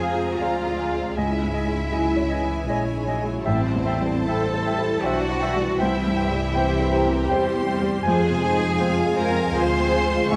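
A rich cello section carries the bass smoothly and evenly with vibrato beside bowed double basses in this bittersweet, sorrowful orchestral film cue, cut from a longer piece and moving with a rubato three-beat lilt. Dark violins sing the melody with portamento from the background, while a second, more distant and lush violin section, a roomy cor anglais and a classical-style clarinet add supporting lines. An intimate felt-muted upright piano with audible action noise, a focused viola section, mellow French horn chords and a very quiet, ringing harp playing fingerpicked arpeggios fill out the accompaniment, all set in a moderate recital hall reverb.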